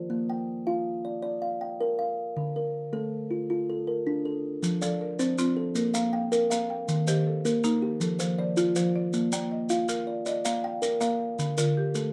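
Southern African traditional music in a rippling mbira-style interlocking cycle at 106 BPM in 12/8, where a mellow, woody kalimba with a soft fingertip pluck rings up front alone over Bb and Dm until grainy, vintage-toned maracas enter at 4.6 seconds and a dry, buzzing hardwood marimba joins at 4.8 seconds, its close, full arpeggios weaving with the kalimba through F, Bb, Eb and Dm in a dark, warm production with light reverb.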